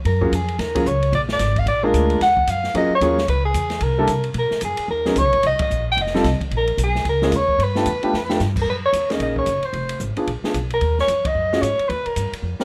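Playful and sophisticated, this brief cut from a longer small-group swing and bop tune moves at a brisk 223 BPM in 4/4 with swung eighth notes, centered in F# major. A mellow soprano saxophone carries the melody up front with vibrato, its tone distant and roomy under a plate reverb. A warm baby grand piano supplies long-sustaining chords beneath it, while a woody pizzicato upright bass with steel strings anchors the low end. An open acoustic drum kit keeps time with dark ride and crash cymbals, hi-hat, a medium-tuned snare and a boomy kick. The band hits accents together at 5.6 and 11.2 seconds, and a drum fill at 8.1 seconds leads into a new section, as the harmony passes through colorful chords such as D#m11 and A#7b9 in a moderate club-sized room.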